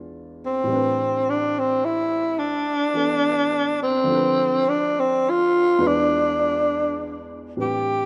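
This jazz ballad excerpt moves at a slow, swung pace in four, with a melancholic and intimate mood. A woody upright piano opens the phrase as accompaniment, its action noise audible beneath the chords, and a growling tenor saxophone enters at 0.5 seconds to carry the melody as a solo, placed up front and well above the piano in level. The saxophone is breathy and raspy, played with subtone, vibrato, scooped notes and a soft attack, its gritty edge balanced by a smooth top. The harmony passes from E7b9 to Am11, then to Bm7b5 at 4.1 seconds and back to E7. A lush hall reverb surrounds both instruments, while the rough home demo mix carries a faint mains hum.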